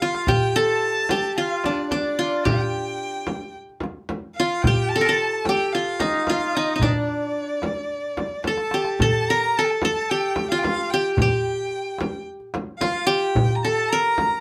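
Arabic maqam ensemble in a melancholic, longing mood at 110 BPM in a straight 4/4, cut from a longer piece, where a bright, fingerpicked qanun leads the melody up front while a single bowed violin sings a soft-attacked second line an octave-range higher with vibrato and expressive portamento, a clay-shelled darbuka and a deep, softly hand-played frame drum sit close and dry underneath, and the live band shares one small, wet room before a drum fill at 8.4 seconds carries the music into a new section at 9.0 seconds.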